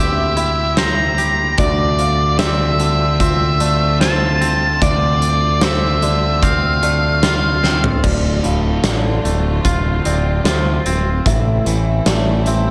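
Post-rock at 74 BPM in D minor, brooding and cinematic, where a dark, fuzzed octave lead guitar carries the melody up front until 7.8 s over a growling overdriven picked bass, a huge arena drum kit with a fat snare and punchy kick that enters at 0.4 s and fills into the second section at 8.0 s, bright twangy clean guitar arpeggios with slapback and tape echo, soft felt-muted upright piano arpeggios tucked in the background, and very quiet sustained chords from a clear, bowed studio string section, all set in a moderate scoring-stage reverb that gives this cut from a longer piece its arena scale.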